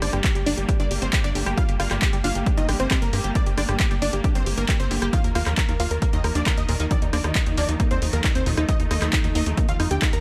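Euphoric yet bittersweet, this uplifting trance excerpt in G minor drives along at 135 BPM, with a lush, detuned unison pluck carrying the melody over an airy supersaw stab, clear bowed strings holding sustained chords in the background, chorused sequenced arpeggios, a tight sawtooth sequencer bass, tape-warm analog drum-machine handclaps, hi-hat and rim clicks, and an up-front punchy kick entering at 0.2 seconds, as sidechain pumping and dub echo shape the synths over a move from Gmadd9 to Ebsus2 in a dry mix.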